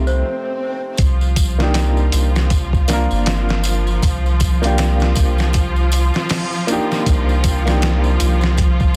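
Built on a swung, 79 BPM trip hop groove in C dorian, this smoky, melancholic excerpt opens with a brief break where bell-like celesta arpeggios with digital delay and an electronic swell sit over woody upright piano accompaniment (carrying tremolo, 12-bit sampler grit and tape echo), lush distant bowed strings, a round up-front dub sub bass and a tambourine, before a gritty, compressed sampler-style drum kit with a thumpy kick enters at 1.0 s under a dense, heavily limited mix in a small room.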